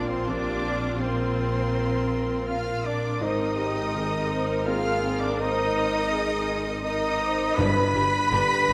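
A full orchestra opens at once in a longing, sorrowful cinematic passage that moves in a flexible, rubato three-beat lilt, cut from a longer piece. A lush studio violin section carries the melody high above with a focused, smooth top and vibrato. Beneath it, a mellow cor anglais, a pure, silvery concert flute with a crisp attack and a soft-edged, distant symphonic violin section weave second lines. A clear viola section and an open, long-sustaining grand piano sit in the background as accompaniment, while a punchy French horn section holds sustained chords and even, smooth cellos and double basses anchor the bottom. Near the close, at 7.6 seconds, round timpani struck with soft mallets enter as the harmony settles onto a G chord. The whole sits in a dark production bathed in wet scoring-stage reverb.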